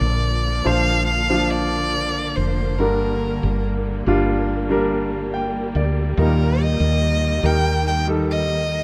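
A straight, unhurried 4/4 pulse at 71 BPM carries this hopeful, tender pop fragment, cut from a longer piece. A close, expressive solo violin sings the melody with vibrato, a soft bowed attack and gliding portamento, sitting up front. Beneath it, a clear, open baby grand piano with short sustain supplies the accompaniment and slips in a fill at 4.9 seconds. A lush symphonic string section holds smooth, focused chords in a low register, while a woody fretless electric bass, round, punchy and hollow-toned with analog chorus, anchors the low end directly. The harmony moves from Bb to Gm and settles on Eb at 6.2 seconds, all in a small room with a rough home-demo character.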